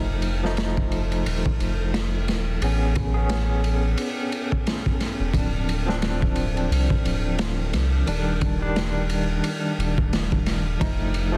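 A barky, lightly overdriven tine electric piano with tremolo, tape echo and a low-pass filter sweep opens this dark, smoky trip hop excerpt at 88 BPM in D phrygian, over a round, deep analog bass, joined at 0.2 seconds by a crunchy, gritty breakbeat kit with a punchy kick, medium-tuned snare and dark ride cymbal, while a very quiet, flickering granular texture hovers beneath through chords moving from F7 to Amaj9, Dm7 and Ebmaj7 in a dense, heavily limited mix dusted with vinyl crackle.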